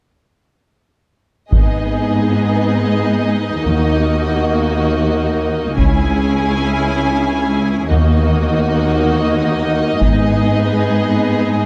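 In free time, this relentless, dramatic excerpt of an epic orchestral film score builds from 1.5 s as bowed, vibrato-laden strings move through Abm, Ebm and Dbm: a warm, smooth-topped violin section carries the second line over a clear, up-front viola accompaniment, while a soft-attacked, expressive cello section and a rich, distant double bass section anchor the low end, and a close taiko ensemble played with hard sticks enters in short bursts at 1.5, 5.8 and 10.0 s, all captured with close, detailed microphones and light reverb.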